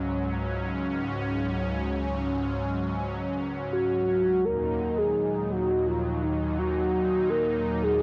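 A home cassette recording sits in a moderate spring reverb with a digital ambience, giving this short synthwave fragment from a longer piece a nostalgic, moody cast. A detuned sawtooth pad, bright and smooth with chorus and a moving notch, holds slow-blooming sustained chords from the start. At 3.7 s a round, full-bodied triangle lead, layered with a sine sub octave and coloured by chorus, phaser, vibrato and analog delay, enters with a dark melody.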